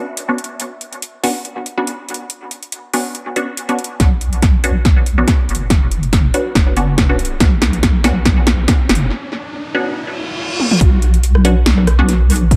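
A half-time groove at 141 BPM in 4/4, carrying a light 16th-note swing, anchors this meditative, cavernous deep dubstep excerpt in B minor. Muted, detuned chord stabs with a wave-folded, filter-plucked bite open the piece on a Bmadd9 chord, colored by phaser and dub echo, and a deep house drum kit follows almost at once with a punchy snare, metallic hats, rim clicks and toms, overdriven and treated with studio reverb and tape echo. At 4.0 s an electronic kick drum and a dark, wobbling soft bass with chorus arrive together, the bass sitting up front in the mix, launching a build-up laced with drum fills. From 6.0 s an electronic riser climbs through the build-up and into a break at 9.1 s, joined by a reverse cymbal at 10.0 s, before the drop lands at 10.8 s. The mix is echo-heavy, wrapped in light reverb and digital ambience that deepen its cavernous sense of space.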